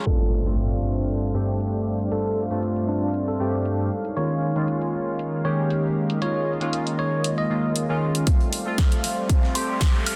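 This excerpt of moody, deep house in G minor at 117 BPM, with a light 16th-note swing, opens on a soft, detuned analog pad holding sustained chords in the background alongside up-front stabs from a glossy, retro polysynth, both pumping against the sidechain, with tape echo trailing the polysynth. An electronic impact lands at once and a filter sweep runs through the first 8.3 seconds. Meanwhile a bell-like, clean tine electric piano carries the melody with tape echo over punchy house drums with crash, hi-hat and snare, as the chords move from G9sus4 to Eb9sus4 and back. At 8.3 seconds the build-up begins: a punchy, layered electronic kick drum arrives up front, and a very quiet, gritty breakbeat sampler-style kit adds hi-hat and snare. A riser fills the closing second, joined by a crystalline, warbling FM synth bell high in its register with chorus, low-pass filtering and tape echo, all set in a lush hall reverb with digital ambience on a dense, heavily limited master.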